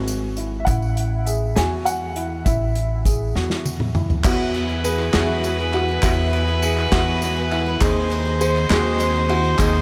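An up-front, growly pizzicato upright bass anchors this hopeful, uplifting indie folk piece in 6/8, cut from a longer work. Beside it, a dark, slightly detuned upright piano plays boxy arpeggios, and from 0.6 seconds a second mellow piano part carries the melody through tape echo. An acoustic drum kit played with bundle sticks, with a punchy kick and a medium-tuned snare, sits with a jingly tambourine tucked in the background. A drum fill from 3.4 seconds leads into a fuller section at 4.2 seconds, where a reedy, gut-string fiddle adds a bowed second line, a shimmering, octave-doubled twelve-string guitar picks out accompaniment through analog chorus with audible finger squeak, and very quiet, hollow group handclaps join. The whole mix is dreamy and soaked in a huge ambient reverb, lending the building arrangement a spacious glow.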